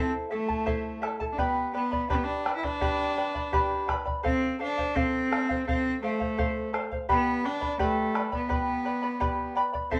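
In a straight 4/4, this melancholic, wistful Andean folk piece moves unhurriedly through Am, G and F chords, cut from a longer work. A single bowed cello carries the melody up front with a biting, earthy tone and a smooth top, while a fingerpicked charango shimmers alongside on its doubled strings. A deep, dark bombo joins at 0.5 seconds, and moderate studio reverb lends the ensemble a gentle sense of space.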